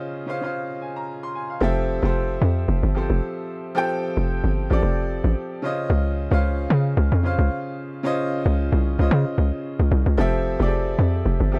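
A relaxed amapiano groove at 112 BPM in 4/4 with a light 16th-note swing, this piece in F major opens on a clear, boxy baby grand piano playing a Dbmaj9 chord with long sustain. At 1.6 seconds the drop arrives on Fmaj9 as a hollow, bouncy log drum bass enters up front, its fast attack and decaying notes carrying an FM tone and a noise layer alongside the piano. A small room ambience surrounds the pair, and the recording is cut from a longer piece.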